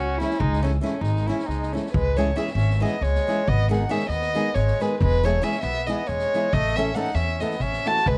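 Balkan folk in the manner of a wedding band, this fiery, virtuosic passage is cut from a longer piece and runs in a brisk 7/8 at 274 BPM counted in eighths, in C# minor with a straight feel. A dark, bowed violin carries the melody up front, played sul tasto by a single player with light vibrato, a soft attack and a smooth, intimate top, while a mellow solo trumpet in classical style supplies a lower second line with its own gentle vibrato. Beneath them, a pizzicato upright bass on steel strings sounds woody and growly, and a bright, fingerpicked flamenco guitar sits close in the mix, finger squeaks and all, entering at 0.2 s and dropping out at 8.0 s. A street-band drum kit with a high-tuned snare and boomy kick stays in the background with a rolled-off top. The harmony moves from C#m through G#m and E to A, the second section arriving at 1.9 s, all captured by close, detailed microphones in a dry room.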